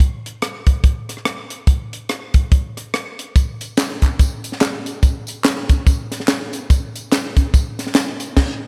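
Soulful and reverent, this brief gospel fragment at 143 BPM in a swung 4/4 opens on a crisp, up-front acoustic fusion drum kit of crash cymbal, hi-hat, tight kick, rim click and high-tuned snare in a small room with light reverb, joined at 3.4 seconds by tambourine, tube shaker and group handclaps, before a band accent lands at 8.4 seconds.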